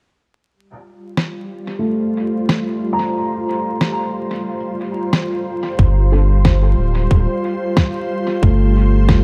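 Heard through light reverb and a layer of vinyl crackle, this meditative, deep ambient dub excerpt at 91 BPM in G minor opens on a pure, detuned organ-like pad with ensemble chorus holding a Gm11 chord. It is soon joined at 1.2 seconds by a muffled, pitched-down sampler-style snare with dub echo, and then by soft, boxy felt-muted upright piano arpeggios with audible action noise, both pad and piano shaped by filter sweeps. A round sine sub bass and a tight, overdriven kick arrive up front at 5.8 seconds, followed moments later by a brief, very quiet sawtooth chord stab.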